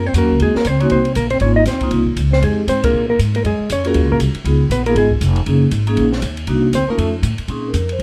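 This short excerpt has a dark production with light reverb, setting a moody, smoky small-group swing and bop scene in Bb minor at a brisk 237 BPM in 4/4 with a swung eighth-note feel. A clean, dark hollow-body electric guitar, fingered, carries the melody from the start, while a breathy, whispered trombone with vibrato, scooped notes and a soft attack plays an intimate second line beneath it; both stop at 7.1 seconds. A woody, thumpy pizzicato upright bass with steel strings sits up front, and a metallic, ringing vibraphone with medium mallets and slow motor vibrato supplies the accompaniment. An acoustic drum kit recorded in a small room, with dark cymbals, a high-tuned snare and a boomy kick, sits low in the mix, using hi-hat, kick, ride and snare. The band hits an accent at 2.8 seconds over harmony that moves from Bbm11 through Dbmaj13, Fm9, Db7, Gb6 and Cm7b5 to F before returning to Bbm11.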